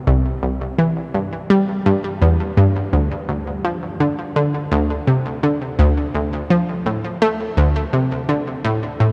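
Drenched in a huge, wet reverb with an 8.1-second tail, this hypnotic, cosmic ambient fragment at 84 BPM in straight 4/4 features a lone up-front analog synth pluck, round and detuned with a bright, fast-attack sawtooth edge, playing between C2 and A3 through chorus and delay from 0.1 to 9.1 seconds.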